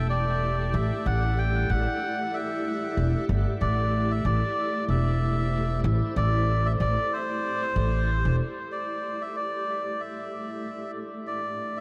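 Ambient dub with a hazy, meditative mood, cut from a longer piece and set in a small, echo-heavy room at a relaxed swung pulse. A reedy, breathy melodica carries the melody up front, its sound roughened by vintage 12-bit sampler grit and trailed by dub echo, over a cloudy, blurred granular pad that holds slow-attack chords with a moving notch and its own reverb. A woody, growly pizzicato upright bass sits up front beneath them until 8.4 seconds, just before the harmony settles onto a suspended chord over an A bass.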